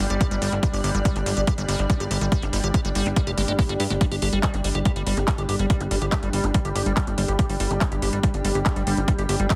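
A straight 4/4 psychedelic trance groove at 142 BPM drives this hypnotic excerpt, with a punchy up-front electronic kick entering at 0.2 s beneath metallic techno hats and handclaps, a funky, plucky analog bass, a squelchy, resonant acid riff run through phaser and delay with sidechain pumping, a bubbling, detuned stepped-filter texture holding sustained chords on a G5 chord, and a blurred, cloudy granular pad drifting in the background, all under heavily compressed, radio-like sound with light digital ambience.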